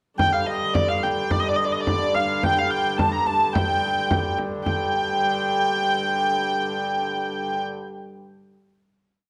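Ancient and driving, this short medieval dance moves at 108 BPM in a straight 2/4. A hurdy-gurdy carries the modal melody up front, its tone nasal and smooth with a boxy edge, decorated with ornaments as it ranges from D5 to Bb5. Beneath it, a second, darker hurdy-gurdy holds a reedy drone between G2 and D3, with an airy bow sound in the wheel. A deep frame drum, close and dry and played with soft hands, keeps an evenly spread pattern until 4.9 seconds. The ensemble then settles onto a final chord from 4.7 seconds, the two hurdy-gurdies ringing out to the end in the reverberant space of a recital hall.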